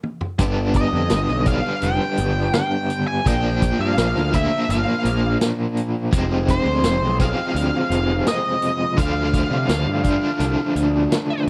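Psychedelic rock with a dark, mysterious mood, moving at 84 BPM in a straight 4/4 and cut from a longer piece. A vintage drum kit opens with a short fill, its tight kick, medium-tuned snare, hi-hat and toms sounding saturated and gritty with a rolled-off top. At 0.4 seconds a bright, double-tracked overdriven electric guitar takes up the riff with tremolo, joined by a growly fuzz bass that sits up front beside it. An octave-fuzz lead guitar enters at 0.8 seconds with a dark, distorted melody in a high register, carried by slapback echo. The harmony passes through G, Bb, Fm and Dm, and the whole is captured as a dry, close 1970s-style studio recording.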